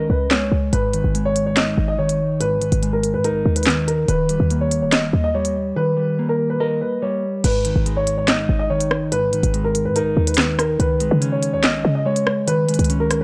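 A half-time drill beat at 143 BPM in G# harmonic minor sets a dark, tense hip hop mood, with an electronic kit of sharp snare, crisp hi-hats, handclaps, rim clicks and crash entering at 0.3 seconds over a short, punchy sine-toned 808-style bass, while a boxy, low-pass-filtered grand piano carries the melody above clean, fingered electric guitar accompaniment, the whole mix framed by digital ambience and a gritty, dry hardware sound.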